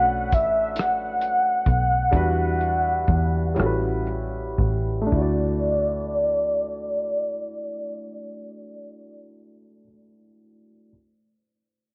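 A small room's light reverb and a low-pass filter, swept over the first 5.1 seconds as the tempo slows, give this slow six-eight R&B excerpt in D major an intimate, tender glow. A velvety, up-front synth lead with chorus, vibrato and tape echo carries the melody over clear concert grand piano chords moving from Bm9 through Em9 and A13 to D, while a round, foam-muted dub bass holds the low end. A dry, dark soul drum kit of hi-hat, kick, ride cymbal and rim click plays only until 5.4 seconds, and the piano alone closes the passage at 10.9 seconds.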